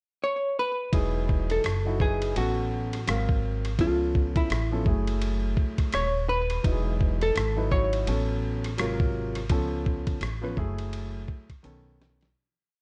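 From 0.9 seconds, a boom-bap beat from a gritty, compressed sampler-style kit, with a thumpy kick and fat snare under a swung ride cymbal, drives this smooth jazz-hop piece alongside a woody pizzicato upright bass walking with chromatic approach notes. A clean, picked hollow-body electric guitar carries a free-roaming melody from the opening pickup bar, treated with slapback echo and plate reverb, while a mellow, vintage grand piano pushes drop-2 chords with grace notes and long sustain in its own plate reverb. The dark, lightly reverberant production moves through rich extended jazz harmony before a fade-out from 9.5 seconds and a closing drum fill at 11.6 seconds.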